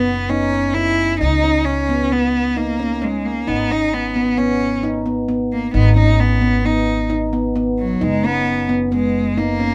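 Contemporary instrumental in G# minor at 132 BPM in a restless, pensive 5/4, where a clear, focused bowed cello with vibrato carries the melody up front, a ringing, airy handpan of nitrided steel spins arpeggios under sharp finger strokes, and a woody, growly pizzicato upright bass anchors the low end through chords moving from F#7sus4 through G#m to F#sus4, all heard in close, detailed sound with light reverb across this 9.7-second cut from a longer piece.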